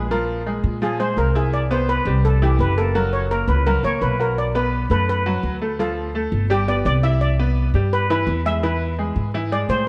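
A driving, straight 4/4 salsa groove runs through this passionate excerpt from a longer piece, anchored by a woody, growly pizzicato upright bass on steel strings that sits up front. Over it, a shimmering lead steel pan played with medium rubber sticks carries the melody, while a brilliant, slightly detuned upright piano with audible action noise supplies intimate accompaniment through colorful changes such as A#sus2, Cmaj7, Bm7 and Cmaj9. Light reverb places the trio a little further back in the room, and all three parts play together from start to finish.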